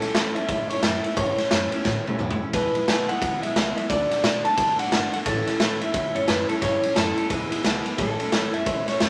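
A swung 4/4 groove at 176 BPM drives this rowdy, rollicking rockabilly excerpt in A major, cycling through A, E and D chords. Up front, a raw garage drum kit pounds out a punchy kick, a medium-tuned snare, ride cymbal and toms, its saturated, gritty sound pumping in a stone room with a rolled-off top, and a drum fill bursts in between 1.9 and 2.5 seconds. Carrying the melody, an electric guitar through a small old amp sounds twangy, lo-fi and slightly broken-up. Beneath it, a picked dreadnought acoustic guitar plays a full-bodied, warm accompaniment. Further back sits a pizzicato upright bass with gut strings, its tone woody, dark and thumpy, and a moderate studio reverb gives the whole band a shared sense of space.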